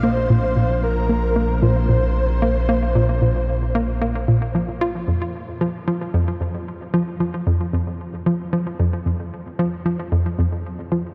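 The recording is steeped in a vast, dreamy reverb with a tail of 7.8 seconds, giving this excerpt of cosmic, mysterious space music a floating, sequencer-driven pulse in a steady, straight 4/4. A hollow, bouncy square-wave pluck carries the riff throughout, sitting up front with a mellow chorus and delay that scatter its short, quick-attack notes into the haze. Beneath it, a fat analog bass holds a thick, saturated, detuned sawtooth tone that evolves as it sustains, then drops out at 5.1 seconds. Above, a breathy, flute-like lead sings a soft melody with vibrato and an ensemble chorus, falling silent at 4.5 seconds. A filter sweep on the arpeggiated synth colors the opening passage as the harmony moves from Bbsus2 to F5, leaving the pluck alone in the cavernous space until 11.0 seconds.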